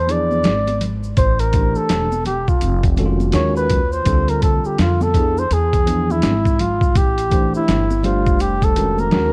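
Jazz-hop with a warm, cool mood at 83 BPM, swung on the sixteenths, built from a short passage that opens with a break and a breathy, softly vibrato flugelhorn soloing up front over chords moving from E7b9 through Am7, Ebm9 and Dm9 to F6. A gritty, pitched-down boom bap kit with a thumpy kick and medium-tuned snare sits alongside a woody, dark pizzicato upright bass with tube saturation, while a clean tine electric piano comps and bright, hard-hand congas and tube shaker stay in the background. Studio reverb and worn cassette tape with warbly pitch drift give the recording its aged character.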